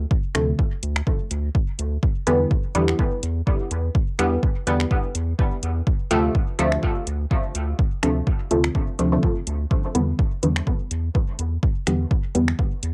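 A muted, detuned dub chord stab with a filtered pluck drives this hazy, meditative dub techno excerpt, its Dm7 and Em7 chords smeared by chorus, phaser, dub echo and tape grain while it pumps against the punchy, up-front electronic kick. A round, deep analog bass holds a dark, sustained line in the low register with the same sidechain pumping, and a soft vintage rhythm box adds dry finger snaps and metallic, overdriven hi-hats over a gently swung groove. The excerpt sits in a light reverb with the intimate character of a home cassette recording.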